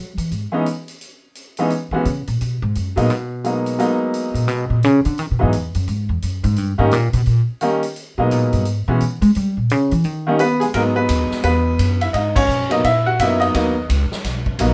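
This cool, swinging jazz piano trio excerpt in G# minor moves at a brisk 172 BPM with a swing feel, beginning with an up-front, woody, growly pizzicato upright bass that carries a featured solo through the first 10.7 seconds. A bright, vintage-sounding upright piano carries the melody over harmony that moves through rich chords such as G#m9 and D#7, while a big-room drum kit sits further back with a punchy kick, hi-hat, ride and crash. The trio hits a band accent at 12.3 seconds in the closing section, all set in a moderate studio reverb.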